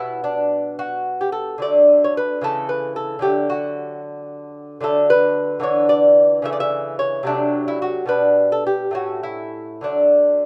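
A lilting compound-time sway gives this short excerpt from a longer baroque-style classical dance its gently rocking pulse, pushed and held back freely in a rubato feel. A single lute carries the whole 10.5 seconds alone, fingerpicked on nylon double strings, some tuned in octaves, which lend its delicate tone a doubled quality. The harmony opens on a B minor chord and moves through D, A/C#, E5/D, D7/C, G/B and A before coming to rest on D. The mood is flowing and dance-like, with the lute sitting up front. A small room ambience surrounds it, and the rough home-demo sound keeps the presentation plain.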